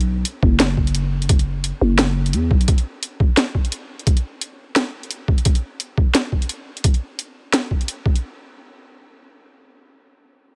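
A half-time drum and bass groove in 4/4 at 173 BPM, with a 58% swing on the sixteenths, drives this heavy, cinematic fragment cut from a longer piece. An electronic drum kit of layered hi-hat and a cracking snare sits up front, joined at 0.4 s by a sampler-style electronic kick that is compressed, pitched down and overdriven into a gritty, thumpy punch. A growling 808-style bass opens the track alongside the kit, its buzzy sine tone with fast attack and decaying tail moving between F#1 and E2 before it stops at 2.7 s. The sound is dry, with little reverb, and every listed part is pushed to the front of the mix. At 8.2 s the piece moves into a new section.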